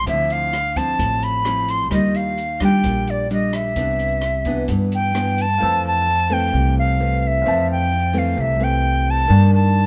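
A bright silver concert flute sits up front with an airy, vibrato-laden tone and a soft attack, carrying the melody high over a breezy, relaxed bossa nova at 130 BPM in a straight 4/4. Beneath it, a fingerpicked nylon-string guitar on old strings gives a woody, classical accompaniment, while a pizzicato upright bass with steel strings supplies a warm, woody low end. A natural-sounding open jazz drum kit with a boomy kick, hi-hat and rim click plays through the opening in C major, dropping out at 5.5 s. As the harmony moves to F major at 5.6 s, a warm concert grand piano enters in the background, intimate, with deep bass, long sustain and audible action noise. The band plays live together in a stone room with moderate reverb, and this short excerpt is cut from a longer piece.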